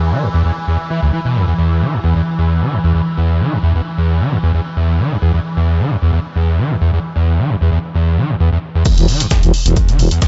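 Industrial and driving, this peak-time techno excerpt at 132 BPM opens on a screaming, squelchy acid line with resonant filter sweep, distortion and chorus over a swarming, detuned granular drone on E3, then at 8.9 seconds drops into a dry punchy analog kick, a gritty pitched-up breakbeat kit with snare, hats and shaker, and drum-machine crash and hats, joined at 9.0 seconds by a growling, thick FM bass up front, all set in a dry, gritty hardware sound.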